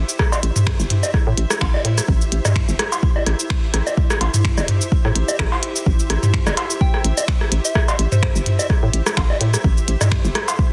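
A dense, heavily limited mix with light digital ambience frames this sparse, cool minimal techno excerpt at 127 BPM in A minor, swung on the 16ths and resting on an A minor chord. A deep, up-front electronic kick and an overdriven, booming analog drum machine of cowbell, rim click, toms and woodblock drive the groove, with a clicky kit of finger snaps, hi-hat and shaker above, while a hollow, bouncy FM bass pumps against the kick. Dark, intimate chamber strings bowed sul tasto sit close, a flickering, grainy granular texture lies in the background, and a soft, pure synth bell with chorus and dub echo appears briefly from 6.8 to 8.3 seconds.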